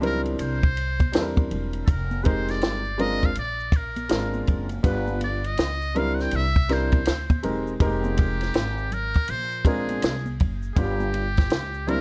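Smoky and mellow, this jazz-hop passage cut from a longer hip hop piece rides a lazy swing on the sixteenth notes, its chords cycling through C7, Fm11, Bb9 and G7 before closing on C7b9/Db. A trumpet carries the jazz-style solo melody from 0.1 s; its metal mute gives a buzzy, thin tone with light vibrato, a brilliant edge and a smooth top, trailed by tape echo. A compact cocktail drum kit sits up front with a punchy kick, a high-tuned snare and dark cymbals on hi-hat and ride, all carrying a gritty vintage sampler character. Beneath it, an up-front concert grand piano plays smooth, vintage-toned accompaniment with a deep bottom, while a woody, growly pizzicato upright bass with steel strings holds the low end. Bright congas struck with hard hands and an egg shaker stay close and dry in the background, and light reverb rounds out a dusky, warm production.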